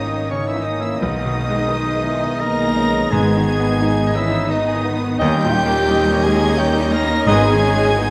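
Tragic and passionate, this short classical passage in a rubato triple metre gives the melody to a clear concert grand piano and a lush, high violin section, while clarinet, oboe, a silver flute with a pure straight tone and a second, very quiet violin section carry supporting lines. Beneath them a dark, distant bassoon and a smooth viola section form the accompaniment, mellow French horn and trombone sections hold sustained chords, a roomy trumpet adds stabs, and bowed cello and double bass sections anchor the bass. Timpani join very quietly at 3.1 s, and the ensemble sits in a moderate recital hall reverb.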